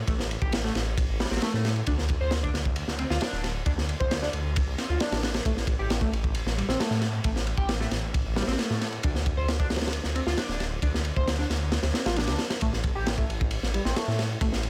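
Breakbeat at 134 BPM in A minor, this raw, energetic excerpt is cut from a longer piece and runs about 14.7 seconds in straight 4/4. A crunchy breakbeat drum kit sits up front with a tight kick, a medium-tuned snare and dark ride cymbal, its saturated, gritty sound rolled off at the top and mid-forward in a studio room. Beneath it, a phased detuned saw bass moves between D1 and A2, thick and swirling with a fast attack and sustained, saturated tone. An overdriven synth lead carries the riff from G3 to C5, a screaming, guitar-like voice built from sawtooth and pulse waves, with vibrato, analog chorus and dub echo adding movement. The kick drops out between 11.7 and 12.6 seconds before returning, while studio ambience frames the whole recording.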